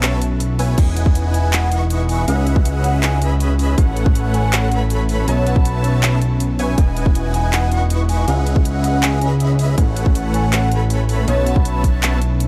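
Bright, lush future bass in E major at 160 BPM with a half-time feel, cut from a longer piece, where a huge, compressed supersaw riff and a fat, detuned analog bass pump against the ambience from the start, alongside a layered, tape-warm dubstep kit with crash, handclaps and bright hats, thumb-plucked concert harp arpeggios with digital delay, and an airy, dreamy chorused lead arpeggiating in the background, with a hard-clipped electronic kick that enters at 0.8 seconds and drops out at 12.0 seconds and a metallic, ringing vintage vibraphone melody from 1.3 seconds, all moving through lush chords from B9sus4 to Emaj9, C#m11 and A69.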